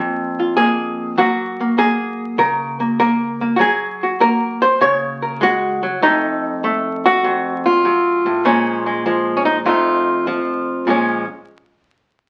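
A clean, hollow-bodied electric archtop guitar, picked up front with a dark, compressed tone, plays a smoky, moody solo jazz excerpt in a swinging 4/4, wandering through a minor-key progression that passes over an F7b9 to resolve back home, all set in a reverberant studio space and heard through the crackle of a very old 78 rpm record.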